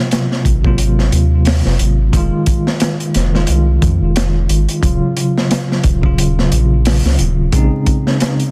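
A round, deep analog bass sits up front in this smoky, dark trip hop excerpt, its mellow, sustained tone entering at 0.5 seconds and moving through chords like Ab13, Fm7, Ebm9 and Bbm11. A crunchy breakbeat kit with a punchy kick, medium-tuned snare and hi-hat brings gritty, saturated weight and a rolled-off top to the swung sixteenth-note feel. A bell-like tine electric piano with tremolo supplies clean, bright accompaniment, all framed by small room ambience, vinyl crackle and a dense, heavily limited master.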